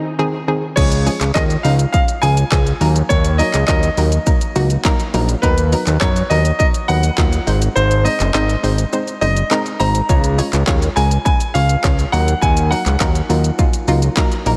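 Dance-pop at 103 BPM in a straight 4/4, bittersweet yet energetic, this cut from a longer piece opens with a hollow, bouncy square pluck alone, pumping under sidechain and shimmering with chorus, before the rest of the band arrives at 0.8 seconds. A brilliant concert grand piano carries the melody through tape echo, while a fat, saturated analog bass pumps up front and a punchy, layered electronic pop kit drives with handclaps, shaker, hi-hat and crash, its kick muted from 7.8 to 10.1 seconds. Chords cycle through Ab, Db and Ebm with a Bmaj7/D# passing colour, all bathed in a lush hall reverb that makes the mix dreamy.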